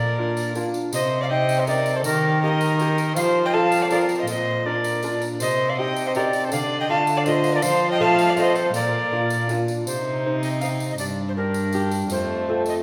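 Heard through a wet recital-hall reverb, this solemn, courtly Renaissance-style consort dance in 3/4 at 161 BPM in C dorian sets an airy, chiffy alto recorder melody over a gut-string violin's reedy second line, a bright, fingerpicked double-strung lute and a rich, up-front bowed cello bass, with a jingly tambourine entering at 0.4 s, in a passage cut from a longer piece.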